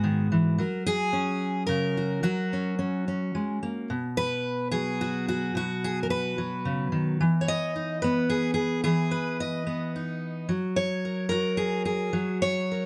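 Closely miked and detailed with a touch of light reverb, this pastoral folk excerpt in a straight 3/4 at 110 BPM features a single bright, up-front fingerpicked steel-string dreadnought acoustic guitar ranging from G#2 to D#5, opening on Eadd9/G# and F# before settling at 3.9 seconds into a longer passage that moves through B5, Emaj7 and F#add9.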